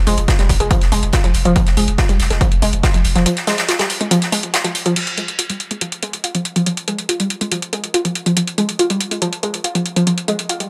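A saturated sub bass opens this driving peak-time techno excerpt, deep, thick and mellow, its overdriven tone darkened by a low-pass filter and pumping against the sidechain. Almost at once a warbly, dusty pluck takes the riff up front, its lo-fi sawtooth-and-triangle tone carrying a noise layer, ring modulation, tube saturation, a subtle chorus and a trailing delay, and it runs the full length of the clip. A punchy, layered electronic kick drives the groove from 0.3 s until 2.9 s, while a techno kit of metallic hi-hats and crash cymbal sits close and present throughout. Beneath them, a natural-sounding soft-mallet acoustic kit adds a fat snare and high-passed hats in a hall-like space, dropping out at 4.9 s. From 5.0 s the second half leans on the pluck and techno kit, set in a digital ambience that keeps the mood intense and relentless.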